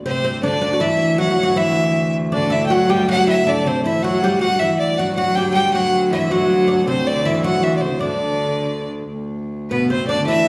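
Festive and ancient in mood, this medieval dance in 6/8 moves at a lively 106 BPM in D mixolydian, taken from a longer piece and heard in a reverberant recital hall. A clear, biting fiddle carries the melody up front with light vibrato, while a bowed viola da gamba plays a woody, ringing second line and a second, intimate gamba with an airy bow sustains a low D drone. A bright, plectrum-plucked oud with double strings adds its own second line, and a new section arrives at 9.1 seconds.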